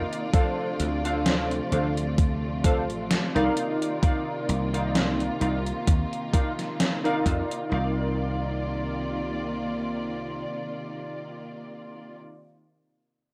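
Nostalgic and hazy, this slow vaporwave cut at 65 BPM in C dorian sets warbling, detuned lo-fi synth keys with chorus, delay and plate reverb over a smooth, bowed studio string section, a punchy, foam-muted thumbed slap bass and an up-front, overdriven drum machine whose gated snare and thumpy electronic kick drop out by 7.7 seconds as the Dm7 to Cm11 harmony drifts on in a rough home-demo mix.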